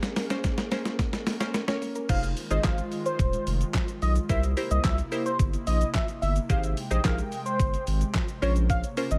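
Dance-pop in F minor at 109 BPM, energetic and driving, this cut opens with a 2.1-second build-up where a woody, mallet-like FM pluck plays very quiet arpeggios over a drum fill from a detuned 8-bit drum machine with a thumpy kick and tape-warm, small-room character, while crisp detuned wavetable stabs and an airy, breathy pad with chorus and sidechain pumping hold the Bbmadd9 harmony. At 2.1 seconds the drop arrives as the pluck stops and a deep, saturated sub bass and a bold, retro octave-doubled sawtooth lead enter, the lead coloured by chorus, phaser, delay and vibrato, both shaped by sidechain pumping. Handclaps, shaker, hi-hat and crash drive the Fm7, C7 and Abmaj7 progression up front in a digital ambience.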